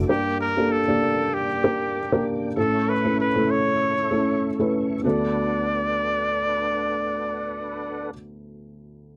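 Pop at 97 BPM in D major, this brief, hopeful cut from a longer piece moves with a light 16th-note swing. A felt-muted upright piano carries the accompaniment up front, its dark, boxy tone thick with felt and marked by audible action noise, and it rings on until 9.2 seconds. Alongside it, a bright trumpet takes the solo melody with vibrato and a smooth top, a slapback echo trailing each phrase. A clean tonewheel organ holds sustained chords in the background, colored by chorus vibrato and a slow rotary speaker, and it drops out with the trumpet at 8.1 seconds. The harmony moves from G minor to A, then settles on D6 as a second section begins at 5.0 seconds. The sound is dry and close, like a 1970s studio session in a booth with a moderate, short ambience.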